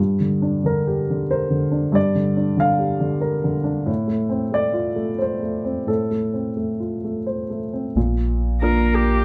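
Neoclassical piano and strings in Bb major, tender and intimate, moving in a rubato 3/4 at around 86-94 BPM in this short excerpt from a longer piece. A woody upright piano with short sustain sits up front as accompaniment throughout, ranging from G2 to F5 over chords that shift from Gm to F/A at 3.9 seconds. At 8.0 seconds the harmony settles on Bb as a pure sine sub bass enters on Bb1, deep, clean and smooth, with a fast attack and a sustained, up-front presence. Moments later, at 8.6 seconds, a single muted cello on Bb3 adds a veiled second line with light vibrato and a soft attack, while a lone con sordino viola joins as accompaniment between G4 and Bb4, dark and bowed with vibrato. The close, detailed miking and very little reverb keep the sound natural and intimate.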